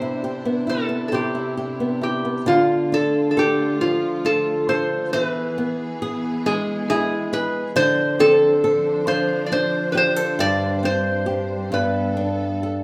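A metal-body resonator slide guitar carries the melody from the first moment, its metallic, nasal tone up front and played with fingerpicks, while a fingerpicked flamenco guitar accompanies with audible finger squeak and a lush, biting string section holds sustained chords with vibrato behind them. This nostalgic, wistful Celtic slow air moves freely in 6/8 at about 45 BPM, tuned to A4 = 438 Hz, with the harmony drifting from Cmaj7 through Dm, E and Dm7 to Gsus4 and Gadd9. A moderate recital hall reverb surrounds the trio, and the piece is cut from a longer work, shifting into a new section at 2.5 seconds.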